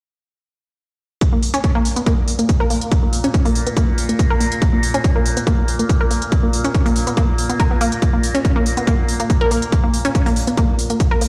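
An overdriven, heavy kick sits up front from 1.2 seconds, pounding a straight 4/4 at 141 BPM, with smooth, layered electronic hi-hats, also overdriven, riding in the same groove. This short cut from a longer piece of driving peak-time techno has a dark, driving mood. An analog pluck carries the riff between Bb3 and Bb4, its round, detuned sawtooth tone snapping with a fast attack and then decaying, coloured by chorus, tube saturation, 12-bit sampler grit, digital delay and sidechain pumping. A filter sweep runs across this arpeggiated synth sound until the cut ends at 11.3 seconds. Beneath it, an overtone-sweeping drone rises in from 1.8 seconds with a slow attack, holding Bb2 to Bb3 as a resonant blend of sawtooth and sine with evolving overtones, chorus, its own reverb and pumping sidechain. The mix has the feel of a big sound system in a bare room, opened up by a large studio reverb.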